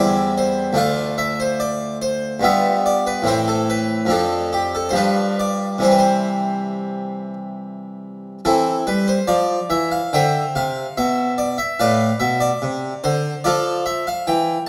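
A moderate recital-hall reverb surrounds a close-miked, up-front solo harpsichord, a full, plucked French-style instrument with two sets of strings, as it plays a radiant, dance-like baroque-style suite movement in C major and 3/4 at 72 BPM with a rubato feel, spanning D2 to G5 and tuned to A4 = 442 Hz, through 14.7 seconds cut from a longer piece that settle on C at 5.8 seconds before a second section opens at 8.4 seconds and closes on an F chord.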